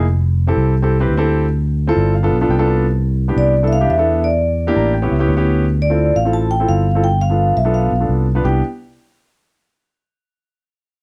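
Jazz in C major at a lively, danceable 171 BPM, this short straight-feel cut opens with an intimate grand piano, heard up front with its action noise, comping and dropping fills at 1.8 and 4.6 seconds over a growly, amped fingered electric bass, before a metallic, ringing vibraphone with slow motor vibrato takes the melody at 3.4 seconds through chords from Fmaj9 and Dm7 to G7 and Cmaj9 in light reverb.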